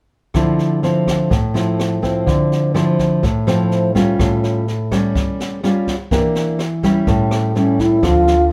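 A dark, fingerpicked nylon-string guitar sits up front in this wistful, intimate bossa nova fragment, moving from Dm9 through A7b13 and Em7b5 to A7 over a jazz brush kit with a high-tuned snare, boomy kick and rim clicks in a natural studio room, before an airy, mellow alto flute, slightly unsteady, with vibrato and a soft attack, slips in at 7.6 s and a round, amped electric bass lands on D2 at 8.0 s, under light reverb.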